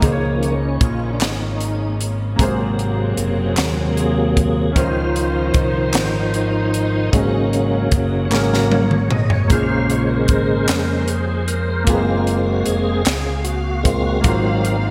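A lightly overdriven tonewheel organ takes the lead up front, its slow rotary speaker and key click giving this slow, uplifting gospel excerpt in 6/8 a full, jubilant voice over rich extended chords. Beneath it, an intimate concert grand with audible action noise plays the accompaniment, a veiled, muted string section holds lush chords in the background, and a round, punchy fingered bass anchors the low end. A crisp fusion kit with a high-tuned snare and tight kick drives the groove and adds a fill from 8.3 to 9.5 seconds, while very quiet, dry group handclaps join at 1.2 seconds, all set in a bright 1980s-style production with a lush hall reverb.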